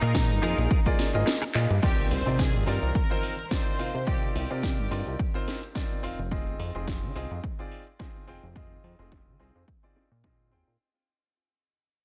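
A groovy, sleek nu-disco excerpt opens with a reedy, bowed violin section carrying the melody through tape echo, a brilliant grand piano, and a brief twangy guitar riff, clean and chorused with echo. Beneath them sit a glossy, retro synth bass, a punchy overdriven electronic kick, and a house kit of cracking snare, metallic hats, handclaps and crash. The kick drops out briefly before a drum fill at 1.5 seconds, then from 1.8 seconds the dense, heavily limited mix fades out under a filter sweep on the drums and a very quiet electronic impact, with piano, bass and drums moving from Cm11 to Fm7 after the violins stop at 5.2 seconds.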